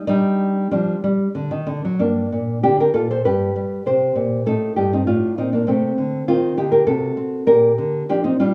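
A small, dark nylon-string guitar sits up front, fingerpicked alone through this grave, introspective classical fragment of a baroque-style dance in 3/4, its rubato phrasing unfolding over shadowed minor and diminished harmonies from a low G2 to C5, all bathed in a moderate studio reverb with a hint of intimate room ambience.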